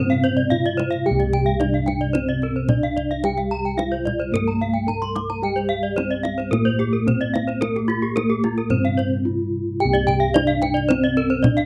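Bronze metallophones and bossed gongs open this brilliant, ceremonial Balinese gamelan passage at once, moving at 110 BPM in a straight 4/4 in C slendro: a mellow metallophone played with padded disc mallets carries the melody over a softer metallophone accompaniment with slapback echo in the background, two horn-mallet metallophones with slapback echo (one bright, close and full, the other airy) spin arpeggios, round, dark gongs hold the bass, and a tight, dry kendang plays percussion, while the paired tuning lends the bronze shimmering beats, until a break with a drum fill at 9.1 s ends the accompaniment at 9.8 s and this outdoor, nearly reverb-free cut from a longer piece carries on.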